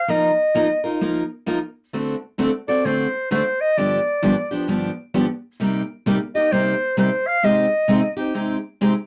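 Jazz in C minor at 131 BPM with a swung 4/4 feel, bittersweet and fiery, where a clear clarinet with vibrato, scooped notes and slapback echo takes an up-front solo until 8.2 seconds, sounding distant and roomy, over bright picked steel-string acoustic guitar accompaniment with audible finger squeak moving through F7sus4, D7, G7, Cm7 and Abmaj7/C, all captured in a dry, close 1970s-style studio sound with light reverb.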